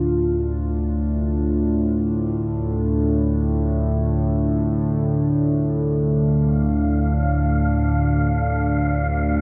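An up-front analog drone anchors this desolate, ominous dark ambient passage in D minor. It holds low between D2 and A2 with a sawtooth and pulse-wave tone, evolving through pulse-width modulation and chorus. Above it, a sweeping resonant pad sustains a D minor chord in free time. Its wave-folded sawtooth and triangle voices are shaped by a filter swell, chorus and phaser. A quartz singing bowl rings out in meditative arpeggios for only the first 0.8 seconds, pure and mellow under a felt mallet with slow beating, and barely audible. At 6.5 seconds an airy, breathy, wind-like tuned noise texture enters on a high F5, carrying its own built-in reverb. An 8-second reverb tail gives the whole cut from a longer piece a huge, wet, dark production.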